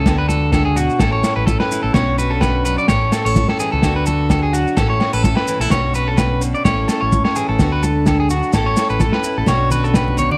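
A carefree, warm highlife guitar band groove moves at 128 BPM in 4/4 with a light swing on the sixteenths, in A major, cycling through D6, A and Bmadd9 chords in this short section cut from a longer piece. Up front, a twangy electric guitar at the edge of break-up plays arpeggios with a slapback echo, while a picked steel-string acoustic guitar fills in the accompaniment underneath. A fingered electric bass, dark and round, anchors the low end, and a lo-fi vintage drum kit with a punchy kick, a medium-tuned snare and a muffled, rolled-off top drives the beat. Around them sit ringing agogo bells in the background, grainy maracas and bright, high-tuned congas played with soft hands at a very low level. The sound has a small-room ambience with light reverb, and a drum fill rounds things off at 9.9 seconds.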